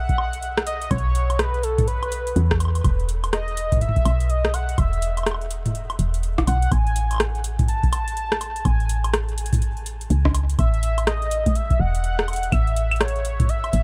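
Wistful and playful, this short IDM cut from a longer piece moves at 124 BPM in 4/4 with a 62% swing on the sixteenths, set in A lydian. A velvety synth lead carries the melody between A4 and A5 across the full 13.8 seconds, its detuned sawtooth and triangle voices softened by chorus, delay and a touch of vibrato. Beneath it, a woody FM bass sits up front in the low register from E1 to E2, round and soft with a fast attack that then decays. A booming analog drum machine enters at 0.1 seconds with metallic hats, rim clicks, toms and woodblock, alongside a deep, tape-warmed electronic kick, both re-recorded in a small room. The harmony shifts from Bsus2 to E5 at 2.8 seconds and A5 at 6.7 seconds, all within a dark, dry production with little reverb.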